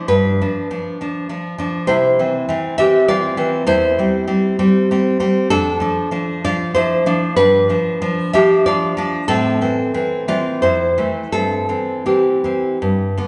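A romantic piece for solo classical guitar in C major and 3/4, moving with a rubato feel between 82 and 105 BPM, nostalgic and sunny in mood. The fingerpicked nylon-string guitar sits up front, bright and full-bodied with a deep classical tone, spanning E2 to E5 over a progression that opens on G7, settles on C and later passes through Am and Fmaj7 before resting on C/G. A wet recital hall reverb with a 1.7-second decay surrounds the instrument, giving the church or concert hall recording a softened top end, slightly flat of standard pitch, in this brief 13.3-second cut from a longer work.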